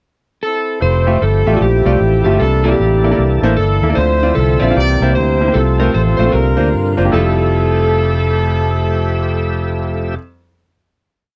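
A swung 152 BPM 4/4 pulse drives this short, reverent and uplifting uptempo gospel piece in F major, where a dark, slightly broken-up slide guitar with slapback echo plays call phrases and a warm, distant horn section carries tight song-phrase melody, both from 0.4 seconds, over a round, up-front fingered electric bass walking and running with chromatic approach notes, gritty overdriven tonewheel organ pads through a slow rotary speaker in the background, and bright baby grand piano off-beat chords entering at 1.1 seconds, all in a dry, close 1970s-style studio sound with light reverb before a final Fmaj9 chord at 7.1 seconds.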